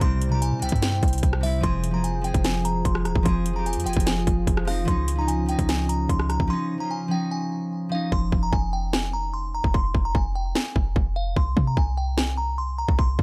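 Eerie and hard-hitting, this half-time trap passage in F minor runs at 148 BPM on an up-front, overdriven electronic kit with a hard-clipped kick, sharp snare and metallic hats, under a deep, boomy sine 808 bass. A delicate, warbling FM tine bell carries the high melody through chorus and phaser, while a bright fingerpicked concert harp and a detuned, nasal analog pad with slow attack hold the harmony over C, F minor and D-flat add9 through the opening section. After a break at 6.5 seconds, the harp and pad fall away and the hi-hats are muted from 8.1 seconds, all in a dry, close-sounding mix.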